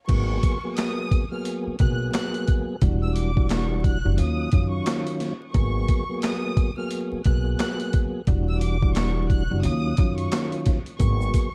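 A swung, thumpy boom-bap groove drives this gritty, reflective hip-hop cut from a longer piece, with a compressed sampler-style kit up front carrying kick, high-tuned snare, handclaps, hi-hat and crash over a woody pizzicato upright bass. A mellow, round tonewheel organ with chorus vibrato, fast rotary speaker and cassette tape colour fills the middle over dark minor-ninth chords, while a smooth-topped studio violin section sings an expressive, tape-echoed melody high above. A grainy tube shaker slips in faintly at 11.0 seconds, all set in a small, dusky room with vinyl crackle.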